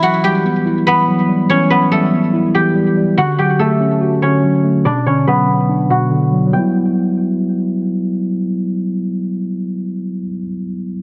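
A fingerpicked guzheng carries a silvery, ringing melody with delay over a clean, mellow tine electric piano from the start, both up front in this eerie, hard-hitting hip hop fragment at 143 BPM with a half-time feel in E dorian. Chords move through Emadd9, Dmaj7 and Bm, and a filter sweep runs until 6.5 seconds before the Emadd9 returns. The guzheng stops at 8.4 seconds, leaving the electric piano alone until 11.0 seconds, all set in a lush hall reverb with a heavily compressed, low-passed radio sound.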